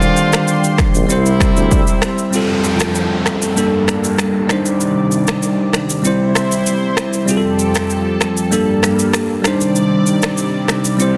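A straight, steady afrobeats groove in 4/4 runs through this mellow, smooth excerpt, carried by an up-front deep house drum kit of punchy kick, finger snaps, rim click and shaker, layered with overdrive, soft clipping on the snare and a gritty vintage 12-bit sampler edge. A bell-like, bright and clean tine electric piano sits close in the mix as the main accompaniment, over a lush, thick unison pad of detuned sawtooth and square waves whose slow attack, long release and chorus give the sustained chords a full-bodied shimmer. At the start, a distant, roomy pop-style tuba holds the bass while a warm horn section with light vibrato and delay plays a second line, and both drop away by about 2.0 seconds. From 2.3 seconds an electronic downlifter sweeps in as the music moves into its second section, and a reverse cymbal arrives at 11.1 seconds, just before the cut. Light digital reverb surrounds a dense, heavily limited modern master that carries some lossy compression artefacts.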